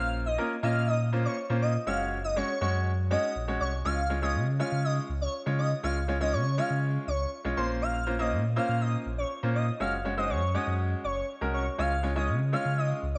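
Dance-pop at 121 BPM in 4/4 with an energetic, confident mood, this excerpt cut from a longer piece pairs an airy, dreamy lead with chorus and slapback echo, singing a melody between C5 and F5, over a brilliant concert grand piano accompaniment and a deep, full sub bass with octave, all set in a moderate echo chamber reverb as the chords move through Bbmadd9, Gbsus2 and Db, with a shift into a new section at 3.9 seconds.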